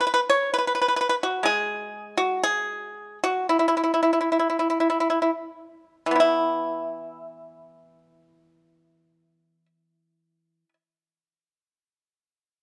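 In a free, rubato 2/4 that drifts between 38 and 64 BPM and slows from 1.4 to 6.2 seconds, this flowing, pastoral passage of Chinese traditional music in E gong mode, cut from a longer piece, features a solo pipa played with fingerpicks, bright, dry and percussive, sitting up front under close, detailed microphones and light reverb as it ranges from B2 to C#5 before stopping at 10.7 seconds.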